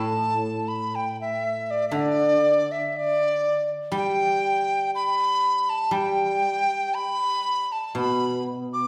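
Chinese traditional chamber music in the G gong mode, pastoral and graceful, moving freely in rubato around 59 BPM in 2/4 across this brief 8.9-second fragment cut from a longer piece. An up-front bamboo dizi carries the melody between D5 and D6 with a breathy, mellow, tongued straight tone, its buzzing membrane audible and its sound slightly unsteady, while a silvery, ringing guzheng played with fingerpicks accompanies low in the register from A2 to G3. Both sound throughout in a resonant recital hall whose reverb lingers for 1.4 seconds.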